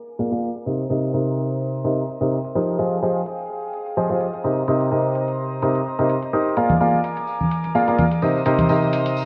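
A clear, polished baby grand piano sits up front with a riff under a low-pass filter sweep and tape echo in this soulful, energetic piano house excerpt at 127 BPM in C minor, with a slight 16th-note swing. Bright, earthy chamber strings hold close, bowed sustained chords over Bb7, Cm7 and Fm9 harmonies, while an analog, tape-warm electronic hi-hat kit stays in the background under its own low-pass filtering. At 6.6 seconds, warm, compressed, saturated tambourine and congas join with tape echo, and the echo-heavy, filtered mix sits in a moderate plate reverb.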